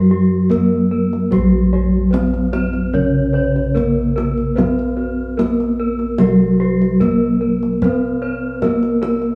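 A mellow bronze metallophone carries the melody, struck with padded disc mallets so its paired tuning yields soft, shimmering beats, while a second metallophone plays accompaniment beneath it in this stately, shimmering Javanese gamelan passage at 74 BPM in straight 4/4. Round, beating bossed gongs anchor the bass, and a higher set of gongs spells out arpeggios alongside a further metallophone. The kendang's tight, close hand drumming enters at 0.5 seconds. The ensemble plays live in one room with a wet stone reverb, and the whole is cut from a longer piece.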